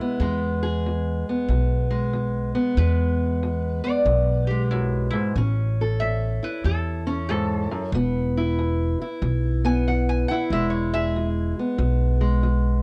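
A metallic, nasal lap resonator guitar carries the melody in this gritty, swaggering acoustic country blues cut from a longer piece, played with fingerpicks and slide. It moves at 93 BPM in 4/4 with a swung eighth-note feel in E major, over a simple progression from E to A and back to E. From 2.8 seconds the resonator takes a solo with a steel bar, and it drops out at 11.3 seconds. Beneath it, a dark, boxy parlour-style steel-string acoustic guitar is fingerpicked up front, while a woody, thumpy upright bass with gut strings is plucked pizzicato, also close in the mix. The sound is a dry, close 1970s-style studio recording with a small room ambience.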